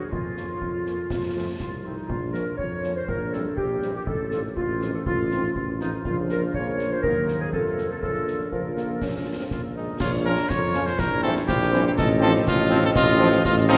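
A clear solo cornet carries the melody of this resolute, martial march for wind band, entering at 0.4 seconds with a light vibrato in a classical style. The piece is in B-flat minor at 122 BPM in a straight 2/4, and this short cut from a longer work states its opening theme twice. A mellow woodwind section sits up front on a second line, while a very quiet French horn section adds soft-attacked accompaniment and a warm, roomy tuba anchors the bass with vibrato. Concert bass drum, snare and dark-toned clash cymbals sound close and dry, set apart from the distant woodwinds and tuba. A punchy euphonium surfaces briefly in the background at 8.5 seconds, and from 10.2 seconds a bright, tight trombone section holds sustained chords beneath the tune. The whole band rings in a cavernous cathedral-like reverb that gives the music a grand, ceremonial weight.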